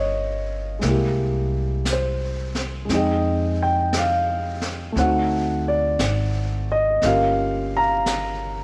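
A dark, mellow baby grand piano sits up front in this melancholic, smoky jazz ballad fragment, its intimate voicing carrying audible action noise as it moves through Gm7b5, C7b13, Fm9 and D7b9 chords with a lazy swung feel. A woody, thumpy upright bass with gut strings plays pizzicato close beside it, while a distant, roomy brush kit with a high-tuned snare and hi-hat slips in at 0.8 s. The whole is bathed in a moderate echo chamber reverb that lends the cut-off passage a lingering, late-night air.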